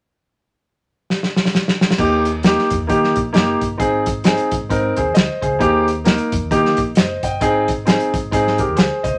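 A studio sound with moderate reverb frames this joyful, danceable uptempo 1960s-style soul excerpt at 133 BPM, swung in Eb major, where a tight, up-front acoustic drum kit with dark cymbals and a medium-tuned snare opens on a fill at 1.1 seconds before a clear, woody upright piano with long sustain and a round, amped hollow-body electric bass in the background enter at 2.0 seconds as the chords move between Eb and Ab.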